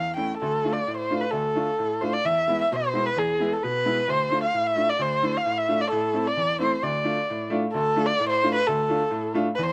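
A straight 2/4 pulse at 131 BPM carries this soulful, bittersweet klezmer fragment in D dorian sharp4, where a dark, woody erhu sings the melody up front with vibrato, portamento and a soft bowed attack under a slapback echo, while a clear, boxy upright piano with short sustain accompanies through chords moving from Dm to E, back to Dm, then to Am and home to Dm, all in a dry outdoor sound.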